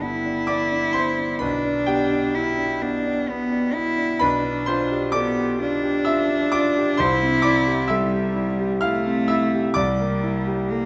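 Serene and tender, this short romantic classical passage for cello and grand piano moves at 64 BPM in 3/4 with a flexible rubato feel, beginning in G major and turning toward C major at 4.2 s. A single bowed cello sings the melody up front and close, its tone rich, smooth and even with vibrato, while a clear concert grand piano accompanies across a broad register with deep bass and an open sound. Both play throughout in a recital hall whose wet reverb gives the sound a lingering bloom, with tuning set to A4 = 438 Hz.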